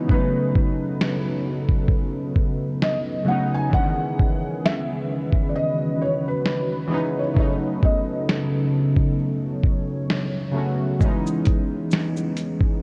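Round, detuned analog keys with chorus and phaser sit up front over a deep, moody pad with a sub octave, joined at 0.1 s by a compressed, pitched-down sampler-style drum kit with a thumpy kick and by a felt-muted upright piano whose soft, boxy melody with tape echo and audible action noise stops at 9.2 s, giving this melancholic, reflective, swung lo-fi hip hop piece a dreamy mix soaked in plate reverb and cassette tape.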